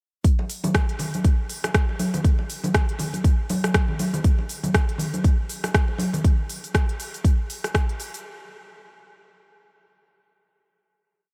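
A deep, layered electronic kick drum sits up front in a four-on-the-floor pattern, driving this short house piece at 120 BPM with 16ths swung at 58% and a spiritual, earthy mood across a single drop. An afro-pop drum kit adds crisp programmed hats, rim clicks, shaker and backbeat from 0.2 to 8.2 seconds, with a tape-colored sound as if re-recorded in a small room. Bright, band-limited vintage congas played with soft hands add muted, high and low tones until 6.2 seconds, all set in light reverb.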